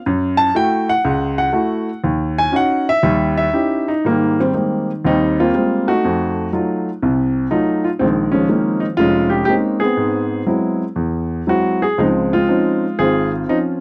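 Solo jazz on a baby grand piano, sophisticated and relaxed at 121 BPM with a loose, rubato swing feel, ranging from F1 to A5 and settling into Ab major at 4.0 s through rich chords such as Abmaj9, Bbm11 and Dbmaj9, its intimate, up-front tone carrying audible action noise and short sustain in a dry, close 1970s-style studio sound touched by light reverb.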